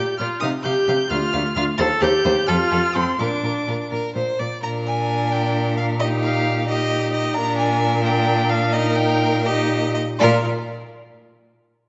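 Classical-period string quartet in a quick 6/8 at 79-89 BPM in Bb major, graceful and spirited with rubato phrasing. A rich, vibrato-laden first violin sings the melody up to A6 over a second violin, viola and up-front cello whose clear, smooth bowing holds the inner lines and bass, all within a reverberant concert-hall space, in a passage cut from a longer piece.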